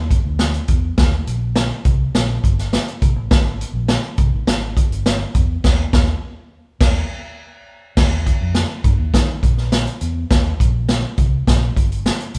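Uptempo 1960s-style soul at 103 BPM in Eb major with an uplifting feel, this live-in-one-room recording pairs a roomy, swinging big-band drum kit with a boomy kick, medium-tuned snare, hi-hat and crash cymbal against a dark, round, punchy muted fingered electric bass, with the band hitting an accent from 5.6 to 8.0 seconds before moving into a new section under light reverb.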